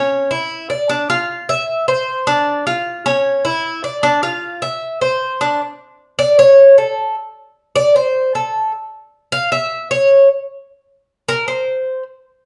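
A large studio's wet reverb, with a 0.9 second decay, surrounds this recording of a band playing live in one room, and the Cuban tres sits up front in the mix. This short cut from a longer Latin piece moves at 153 BPM in a straight 4/4 feel in D minor, tuned to A4 = 438 Hz, with a danceable, warm mood. The acoustic tres is picked on its double strings, some of them doubled at the octave, giving a warm, metallic shimmer across a range from C#4 to F5. It is heard from 0.0 to 12.0 seconds, and at 5.6 seconds the music moves into a new section where the tres takes a solo.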